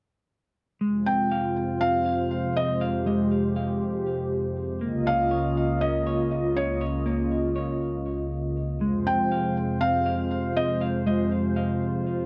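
A half-time hip hop feel in 4/4 carries this hazy, ethereal fragment, where a warbling, detuned analog pad with lush chorus sustains chords up front, a dark, clean semi-hollow electric guitar plays filtered, delayed arpeggios, and a soft, felt-muted upright piano, likewise filtered and delayed, sings an intimate melody from 1.1 to 10.8 seconds inside a small, wet room.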